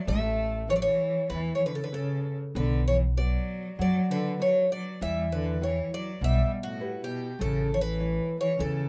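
Lightly reverberant, this mournful, longing fado-style ballad fragment unfolds with a rubato feel as a shimmering, octave-doubled twelve-string acoustic guitar with old strings and a woody tone carries the melody up front, a rich, smooth bowed cello with vibrato sings a close second line, a full-bodied classical nylon-string guitar fingerpicks the accompaniment with audible finger squeak, and a dark, thumpy pizzicato upright bass on gut strings grounds the progression from Aadd9 through Bm and Em back to A.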